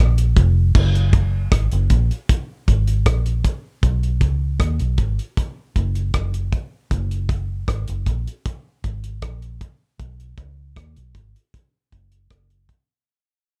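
A foam-muted, round and punchy vintage electric bass opens this sunny roots reggae piece at an unhurried 78 BPM in F# major, with a cloth-damped, thuddy acoustic drum kit joining at 0.2 s on tight kick, rim clicks, hi-hat and shadowy crash cymbals. Both parts sit up front in a dry mix, and the drums, captured in a small room, have a rolled-off top. The production is dark and warm, and the piece fades out from 0.8 s to the end at 13.1 s.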